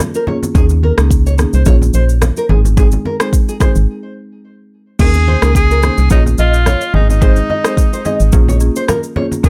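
Dry, nearly reverb-free afrobeats in Ab major at 108 BPM with a joyful, breezy lilt, cut from a longer piece, where an electronic drum kit with a deep kick, crash, rim click and shaker sits up front beside a hollow, organ-like FM bass, soft-handed, low-tuned congas ring in the background, a fingerpicked nylon-string guitar riff with digital delay and a woody marimba fill the middle, and after a chordless break from 3.9 to 5.0 seconds a breathy, whispered tenor saxophone with vibrato and delay enters at 5.0 seconds.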